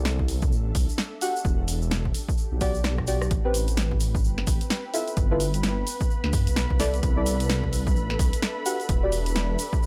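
The recording sits in a digital ambience with a tape-kissed, late-night sheen and a skippy swing on the sixteenths. This two-step UK garage excerpt in 4/4, cut from a longer piece, is built on a punchy electronic kick and a dark, detuned sawtooth bass that rumbles up front. A drum machine supplies hi-hat, rim click and snare, with a drum fill from 2.8 to 3.3 seconds, while a grainy acoustic tube shaker adds texture from a small room. Mellow, nasal chord stabs with a quick filter pluck carry chorus, cassette tape colour and digital delay over chords moving through C69, Em9 and G13. An ethereal, airy pad hovers in the background with ensemble chorus, reverb and sidechain pumping, and at 3.3 seconds a smooth, evolving analog pad joins with its own chorus and pumping sustained chords.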